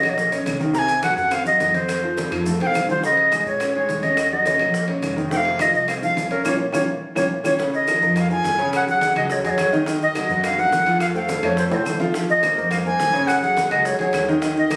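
Caught on a phone in the room and washed in a moderate plate reverb, this fiery, danceable salsa excerpt in Bb minor races along at 211 BPM in straight 4/4, led by an airy, reedy wooden flute up front with vibrato and tongued notes between Bb4 and Bb5. A clear, polished concert grand piano sits close beside it with long sustain, while a dark, thumpy pizzicato upright bass with gut strings anchors chords such as Ebm7, Cdim and F. In the background, tight high-tuned bongos, ringing metal-shell timbales, band-limited vintage claves, low-tuned congas entering at 0.2 s and grainy maracas in a large room drive the dance, with drum fills around 2.5 s and 11.7 s and a band accent at 6.5 s.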